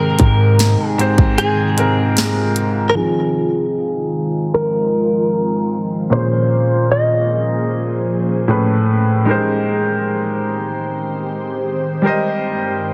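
Tender and dreamy, this slow contemporary R&B fragment at 76 BPM in Ab major opens on a clean, direct-recorded electric guitar melody bathed in lush chorus and digital delay that sings until 8.8 s, over clear baby grand piano and an ethereal, airy pad shimmering with phaser and ensemble chorus, while a brief deep, boomy 808-style bass drops out at 1.4 s and a trap drum kit with a hard-clipped kick, sharp snare and bright hats falls away at 2.7 s, leaving a filter sweep from 3.0 s to carry the lush seventh and ninth chords through concert hall reverb and a heavily compressed radio sound.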